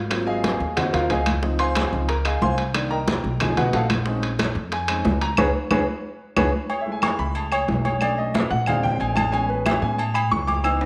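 A clear, intimate grand piano sits up front with its action noise audible, bathed in a wet echo-chamber reverb, as this fiery, sophisticated Afro-Cuban jazz excerpt races along at 182 BPM in a straight 4/4, the piano soloing throughout over rich chords such as Ab13, Dbmaj9 and B13sus4. A thumpy, woody pizzicato upright bass on steel strings anchors the low end beside ringing, distant congas, metal-shelled timbales and agogo bells, and background claves, while tight, high-tuned bongos sit very quietly in the mix until 6.4 seconds. The band hits an accent at 5.4 seconds and a drum fill runs from 5.7 seconds before the opening passage repeats at 6.7 seconds, with another fill at 10.7 seconds.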